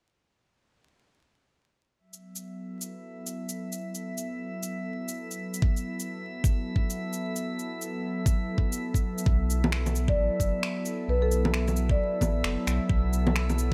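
Ghostly and nocturnal, this future garage fragment at 132 BPM in a swung 4/4 opens on a warbling, nostalgic lo-fi pad holding a B7sus4 chord, with chorus, sampler grit and sidechain pumping, while a calm, glassy texture of drifting overtones and up-front layered electronic shaker, bongos and finger snaps join almost at once. A knocking electronic kick arrives at 5.6 seconds, and a deep, round, soft dub sub bass with its own sidechain pumping takes hold at 9.3 seconds. A woody rosewood marimba with medium mallets briefly adds a short melody through digital delay from 10.1 seconds, all set in a moderate recital-hall ambience with a bed of vinyl crackle.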